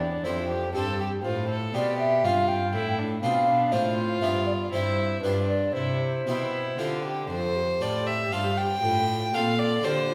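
Heard in the lush reverberation of a recital hall, this flowing, serene passage from a baroque-style sonata movement in triple time features a hollow, airy wooden flute with vibrato and tongued notes on the melody, over a rich, reedy solo violin carrying the second line. A lone cello with a nasal edge and light vibrato holds the bass, with both string players drawing a period gut-string tone, while a brilliant, full Italian-style harpsichord sits quieter beneath as accompaniment. All four parts play throughout, and the harmony settles onto C at 5.7 seconds before turning to F.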